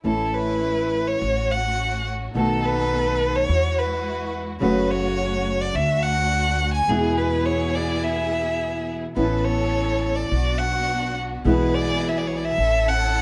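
A bowed solo violin sits up front, singing with vibrato, portamento and a soft attack in this tense, passionate tango excerpt in A major, played rubato around 106 BPM in 4/4. Beneath it, a thumb-plucked nylon-string guitar with audible finger squeak accompanies until 12.6 s, a lush studio string section with a smooth top adds bowed stabs, and a woody, thumpy pizzicato upright bass anchors the harmony as it moves through F#m, B7 and E before returning to A. Close, detailed microphones and light reverb keep the playing intimate.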